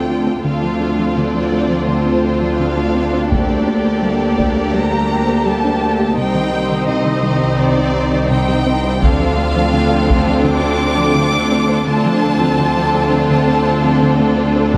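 Up-front, smooth bowed cellos anchor this tense, vast hybrid orchestral and electronic film-score excerpt at 84 BPM, beneath lush vibrato violins carrying a focused melody and a second line, close violas, mellow distant French horns, an ethereal airy pad, a soft round pluck with chorus playing arpeggios, and dry, hard-stick taiko passages entering at 3.3 s and 9.0 s and briefly again at 14.7 s, all set in a wet scoring-stage reverb over a Dm7–Gmadd9/D–Cmadd9 progression.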